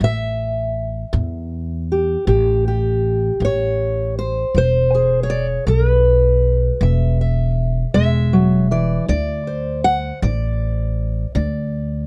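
A slow 12/8 sway at 53 beats per minute drives this twelve-second excerpt of acoustic country blues, swaggering and rollicking in a straight feel. A dark, fingerpicked steel-string acoustic guitar carries the melody up front, finger squeaks audible, while a woody, thumpy pizzicato upright bass holds the low end beside it, both playing throughout. Close, detailed miking with little reverb keeps the duo intimate as the harmony moves from A7 to E at 4.6 seconds and D5 at 9.1 seconds.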